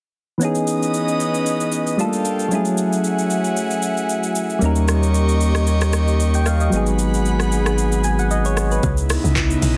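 A dense, heavily limited mix with light reverb carries this soulful, hypnotic amapiano excerpt in C# minor at 114 BPM with a swung 16th feel, where mellow, chorused electric-piano-like synth keys sit up front over a breathy, evolving pad and a smooth R&B kit of knocking kick, metallic hats, handclaps, rim click, shaker and a softly clipped snare; a thick, saturated sub bass arrives at 4.6 s, then at 8.8 s a dark, percussive log drum bass takes over alongside very quiet, close congas and bongos as the chords return to C#m9.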